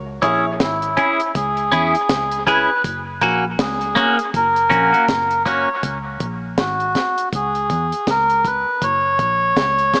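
Through a light reverb and a small-speaker sound, this deep, meditative dub reggae fragment rests on a dark, round, foam-muted electric bass and a dry, acoustic drum kit with a high-tuned snare and tight kick, while a brief woody piano stab and a bright, twangy clean guitar with phaser and dub echo open the groove (the guitar dropping out at 5.7 seconds) beneath a reedy, breathy, nasal melodica that carries the up-front melody from 0.6 seconds, its vintage band-limited tone trailing dub echo over C#m and F# chords.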